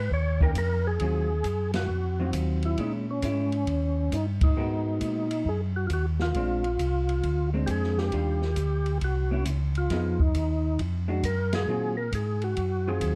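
A percussive tonewheel organ carries the melody through a slow rotary speaker, its full, lightly overdriven tone touched by chorus vibrato, while a second, mellow tonewheel organ with key click and a round low end supplies the bass in this soulful, bluesy soul jazz organ trio cut from a longer piece. Swinging in Eb dorian at 135 BPM, the lead organ takes a solo through the first second as an open jazz drum kit with dark cymbals and a boomy kick joins at 0.1 seconds, and a clean, compressed hollow-body guitar adds picked accompaniment from 0.4 seconds. The band hits accents at 1.7, 4.3 and 11.5 seconds over rich extended chords, all set in a dark production with light reverb.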